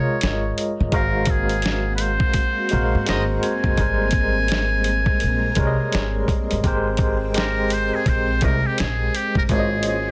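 A dry, dense and heavily limited sound frames this short neo-soul R&B excerpt in Ab major, moving at 84 BPM in 4/4 with a 16th-note swing that gives it a soulful, unhurried glow. A barky tine electric piano sits up front, lightly overdriven through a combo amp with a medium tremolo, carrying the chords from Bbm11 over Ab through Ab13, Ab9 and Abmaj9. Underneath, a woody, dark upright bass with gut strings plays pizzicato, while a gritty, sampler-style drum kit with a thumpy kick, medium-tuned snare and hi-hat comes in at 0.2 seconds, compressed and close. A shimmering string machine of violins with ensemble chorus and a slow attack enters at 0.9 seconds and stays in the background, holding sustained chords. Over it all, a trumpet with a metal mute carries the melody in a buzzy, breathy, whispered jazz voice with a slapback echo, stepping into an intimate solo from 6.6 seconds to the end.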